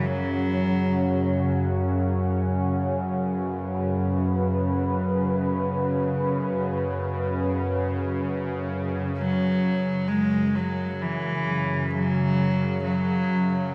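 Drenched in a cathedral-sized reverb and smeared by the warbling pitch drift of a worn old cassette tape, this unsettling, desolate dark ambient drone floats in free time, cut from a longer piece. A tense, string-like bowed-style drone with a detuned, ring-modulated edge sits up front under a filter sweep until 9.2 seconds, while a deep, moody pad holds slowly evolving sustained chords with chorus beneath it. A close, reedy cello with a gut-string, period-style tone plays a brief melody at the opening and returns at 9.2 seconds to carry it through to the end.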